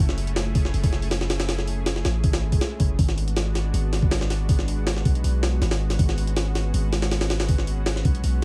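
Frenetic yet atmospheric, this drum and bass and jungle excerpt runs at 160 BPM in 4/4, with a gritty, pitched-up sampler-style kit of thumpy kick, high-tuned snare and hi-hat sitting up front beside a deep, sine-toned 808-style bass that decays in long, mellow tones. Behind them, a lush, detuned sawtooth unison pad with a slow attack and chorus holds bright, warbling vintage chords moving from F#m7 to G#m7b5 at 3.0 seconds, while a very quiet electronic swell rises between 2.5 and 3.0 seconds. The sound is dry, overlaid with vinyl crackle.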